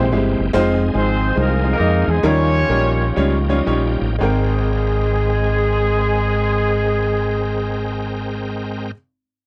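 A clear, vintage horn section carries the melody up front with vibrato and octave doubling in this reverent, hopeful gospel passage with a swung feel, cut from a longer piece. A woody upright piano accompanies, a bright, shouting tonewheel organ holds sustained chords through a slow rotary speaker and chorus vibrato, and a round, punchy fingered electric bass anchors the low end. The music slows from 0.5 to 4.2 seconds, where organ and piano fills lead into a new section on a major-ninth chord, all captured in a dry, close 1970s-style studio sound with light reverb.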